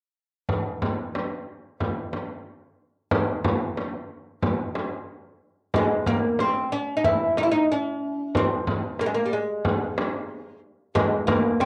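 This is an Arabic maqam ensemble piece, a short cut from a longer performance, with a stately yet festive mood at 92 BPM in a straight 4/4, tuned slightly high at A4 = 441 Hz. A small, acoustic frame drum opens at 0.5 seconds and carries the music by itself at first, its bright sound set at a distance in a large-sounding room. At 5.8 seconds the oud enters with the melody, moving between G3 and E4 as the second section begins. The plectrum-plucked, fretless oud has a bright, woody, deep tone from its double strings, sits close and forward in the mix, and carries a cassette tape coloring. Both parts play through to 11.7 seconds, framed by a short, wet small-room reverb and the homespun character of a home cassette recording.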